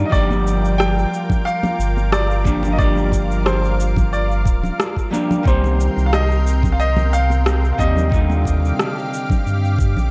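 Sunset chillout in G minor at 90 BPM, this smooth, relaxed excerpt moves in 4/4 with a light swing on the sixteenths, cut from a longer piece. A round, deep sub bass sits up front with a fast attack and mellow sustain, paired with a knocking, tape-warm electronic kick. Overdriven electronic cabasa and rim clicks, layered and carrying the air of a large room, ride over soft-handed congas tucked into the background. A dark, clean hollow-body jazz guitar picks out the accompaniment while a thick, detuned unison pad with chorus holds slow-attack chords that shine bright. Over this, a clear, polished baby grand piano carries the melody from 0.1 seconds through a digital delay, as the harmony moves from Gm7 to Cm7 and settles on Ebmaj9 at 8.1 seconds, all wrapped in a dark, warm production with light reverb.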